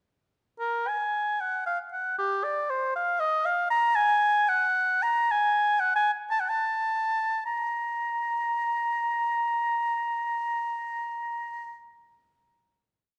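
Flowing and solemn, this brief, complete piece is a baroque-style fantasia for unaccompanied oboe in 6/8, played with free, rubato timing. The solo oboe sits close and up front, its tone warm with a light vibrato, and its melody ranges from G4 to Bb5 with leaps down to bass notes. The phrase enters at 0.6 seconds and begins to slow from 3.0 seconds, settling into a long final note held from 7.5 seconds. A moderate recital-hall reverb surrounds the instrument, and the dark, warm production gives the performance a classical character.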